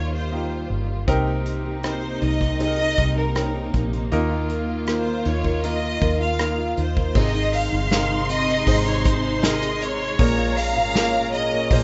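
A rough home-demo mix with a dulled top end and moderate studio reverb frames this tender, emotional pop ballad excerpt in Ab major at 79 BPM, where a lush, up-front symphonic violin section carries the melody over clear grand piano with audible action noise, smooth sustained string-section chords and a dark, round, foam-muted electric bass, joined at 1.1 s by a fingerpicked steel-string acoustic guitar in the background with tape echo and an acoustic drum kit with dark cymbals and a punchy kick played with bundle sticks, before a distant, expressive second violin line enters high above at 7.2 s.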